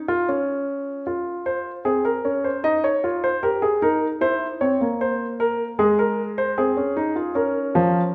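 Contemplative yet driving, this short cut from a longer classical piece is a baroque-style three-part fugue for solo grand piano, moving at 76 BPM in a straight 4/4. A dark, mellow baby grand carries everything on its own from 0.1 to 8.1 seconds, sitting up front with a natural tone across a range from F3 to Eb5. Its voices unfold over a minor-leaning progression that opens unharmonized, then moves through Fm, Eb, C7, Fm/Ab and arrives on Bbm. The playing is set in a recital hall whose wet reverb, with a decay of 1.5 seconds, lends the counterpoint a sense of space. The result feels earnest and absorbed, a brief glimpse of an ongoing contrapuntal argument.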